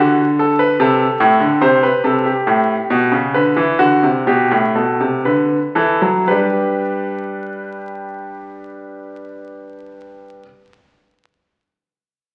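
Surface crackle from a very old 78 rpm record hangs over this recording, and a wet recital-hall reverb lends the sound a lingering glow. Within that aged frame, a lively and joyful baroque-style two-part invention in triple metre unfolds on a solo concert grand piano, cut from a longer piece. The instrument sits up front, clear and intimate, with audible action noise, a deep bass, and a polished tone whose long sustain blooms into the hall. During the opening passage the pace gradually slows, moving through harmonies from D and Am7 to A7 and G before settling back on D. At 6.3 seconds a new section begins on G, and the piano falls silent at 10.4 seconds.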